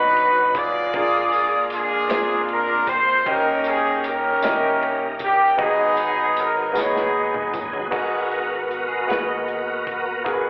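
A smooth, up-front horn section carries the melody with light vibrato in this fervent, soulful slow gospel piece in a straight 6/8, an excerpt cut from a longer performance. Beneath it, a clear, polished concert grand piano lays down accompaniment with deep bass and a slapback echo, while a bright, shouting tonewheel organ holds sustained chords in the background, lightly overdriven with chorus vibrato and a fast rotary speaker. A round, dark fingered electric bass and a very quiet, rolled-off studio drum kit with a tight kick sit low in the mix, joined by a jingly tambourine close in the background. The drums play a fill before the horns drop out at 7.9 seconds, when the organ steps forward for a solo, and a clean, picked electric guitar adds a second line with slapback echo from 8.9 seconds. The whole performance sounds like a live gig heard through the venue's PA, with club reverb and a narrow, telephone-like tone.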